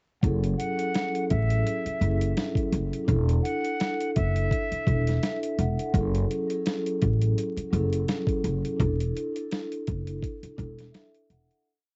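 A woody, pizzicato upright bass anchors this reflective, tough boom-bap hip-hop piece with a deep looped line and muted ghost notes, sitting up front beside a gritty, compressed sampler-style drum kit with a thumpy kick, medium-tuned snare and swung sixteenth-note hats in a laid-back beat. Soft-mallet vibraphone, mellow and band-limited with slow motor vibrato, pushes spread chords in a loop like a sample and adds a short fill at 4.9 seconds, while a distant, airy flute repeats a brief looping melody through analog delay from 0.6 to 5.4 seconds. Light reverb, vinyl crackle and a dulled cassette top end give a dusty home-recorded feel before the fade-out from 8.8 seconds.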